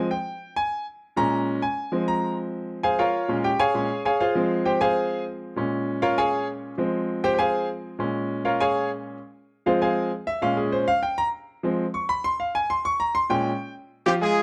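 A straight 4/4 Latin groove at 198 BPM drives this danceable fragment, with a bright concert grand piano playing alone from 0.0 to 14.1 seconds, its brilliant, up-front tone reaching into deep bass with short sustain as it cycles between Fm, Fmadd9 and Bbm7 chords. At 14.1 seconds a clear, punchy horn section enters with the melody, its smooth top and light vibrato sitting up front in a pop-style ensemble sound. The whole is set in a wet small room with a dark production.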